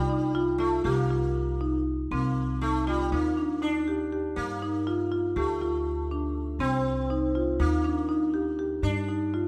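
A dark, warm production with light reverb frames this brief, pensive passage of contemporary chamber music, cut from a longer piece and moving in an uneven 9/8 at 241 eighth-note beats per minute with a straight feel. A close-miked, dry marimba struck with medium hard mallets sits up front from 0.1 seconds, spinning full arpeggios in its middle register that give the music its hypnotic pull. Beneath it, a pizzicato upright bass with steel strings lays down a woody, dark foundation, also placed up front. The plucked sitar carries a quieter second line, its brilliant, buzzing tone shimmering with sympathetic strings. In C dorian, the harmony settles on C minor and C minor seventh before opening at 2.1 seconds into a longer stretch that cycles through Ebmaj7, Gm7 and Dm, returns to C minor and Ebmaj7, and comes to rest on a bare G5.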